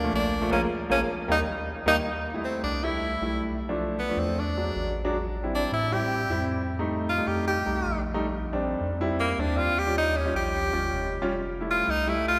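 A sunny, sophisticated jazz piece moves at 156 BPM in a straight 4/4. It opens with an edgy, punchy tenor saxophone up front, alongside a growling, raspy trombone in the background that drops out at 2.0 seconds. From 0.5 to 2.1 seconds the band plays an accent, and at 2.1 seconds the saxophone begins a forceful solo with scooped notes that carries on to the end. Underneath, a clear grand piano with audible action noise plays the accompaniment, and a round, deep analog bass anchors the low end. The harmony moves through chords such as Am9, E7 and Bb6 before settling on Fmaj7. A long church reverb gives the sound the spacious feel of a large hall, and the recording is cut from a longer piece.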